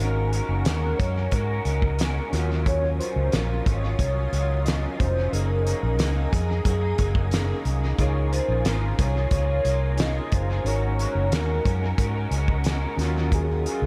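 A dreamy, laid-back indie and bedroom-pop fragment opens with a velvety, detuned synth lead carrying the melody over twangy, slightly broken-up electric guitar, a mellow tine electric piano tucked in the background and an ethereal, phased pad, while a round, foam-muted fingered bass sits up front and a loose indie drum kit with a fat snare and punchy kick joins at 0.3 seconds, tape echo coloring the lead, guitar, piano and drums across a chord cycle of Ab9sus4, Ebm9 and Gb69 in a dry, echo-heavy mix.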